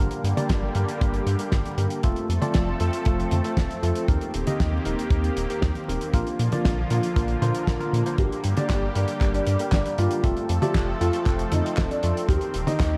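A straight 4/4 pulse at 117 BPM drives this bittersweet, danceable italo disco excerpt in G minor. A dry, tight acoustic kick enters at 0.5 seconds beneath a damped 70s kit of handclaps, hi-hat, fat snare and toms, its top rolled off and set in studio reverb. A round analog bass with a deep, sine-and-sawtooth tone and a fast attack holds the low end, while a lush unison pad sustains chords, its detuned, airy voices thickened by chorus, phaser and a gritty 12-bit sampler edge. A worn, slightly out-of-tune tine electric piano adds lightly overdriven stabs through a low-pass filter and digital delay as the chords move through Gm, F, Eb6 and Bb. At 8.2 seconds a dark, boxy grand piano enters with a mellow, long-sustaining melody trailed by digital delay, and a moderate hall reverb and vinyl crackle give the whole production a dusky, vintage haze.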